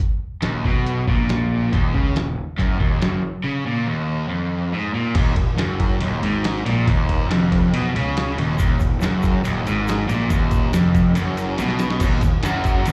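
Heard through a club PA with moderate reverb, this gritty, driving classic rock excerpt in Eb minor at 140 BPM pairs a muffled, thumpy, pitched-down sampler-style drum kit and a bright, compressed overdriven guitar up front with a sludgy distorted guitar and a punchy fuzz bass. Both guitars riff over Eb minor with slapback echo while the bass holds down the low end, a grainy egg shaker joins in the background at 8.6 seconds, and a drum fill arrives at 11.6 seconds.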